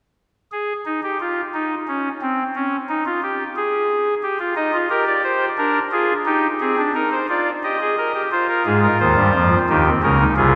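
Joyful and lively, this short excerpt from a longer baroque-style fugue in three voices unfolds in a triple metre on a solo pipe organ drawn to a soft reed oboe stop, its baroque voicing giving each note a crisp chiff at the start. The reed sits up front while a wet church reverb, heard from further back in the room, lets the sound bloom and linger for several seconds. After an unaccompanied opening line, the harmony settles around 4.2 seconds and moves into a new section at 8.3 seconds.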